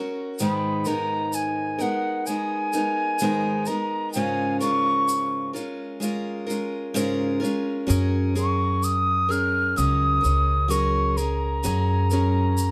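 An airy wooden flute carries the melody up front in this wistful, reflective acoustic folk piece at a slow 64 BPM in 4/4, its soft-attack, straight tone sitting over bright picked steel-string guitar with audible finger squeak. A grainy tube shaker ticks quietly underneath, and a woody pizzicato upright bass joins at 7.9 s as the harmony moves from G#madd9 through C#6/G# to F#add9. Light reverb gives the small group a gentle sense of space in this short excerpt cut from a longer piece.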